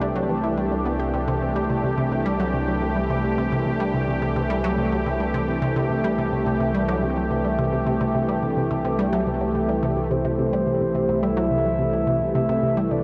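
Ambient, sequencer-driven space music in C lydian, this 13-second excerpt from a longer piece moves at 107 BPM in a straight 4/4 and feels luminous and cosmic. A sweeping resonant pad holds sustained chords on C throughout, its airy, evolving sawtooth tone carrying a noise layer and a slow filter swell, bright and up front with chorus. Alongside it, a resonant blip pluck repeats a riff the whole way through, its squelchy, juicy attack cut short and thickened by chorus and analog delay. At 10.1 seconds a soft octave-layered synth lead enters with a melody high in the register, round and full with a sub octave, vibrato, chorus and analog delay. An enormous wet reverb with an 8.4-second tail surrounds the parts, and the production overall is dark and warm.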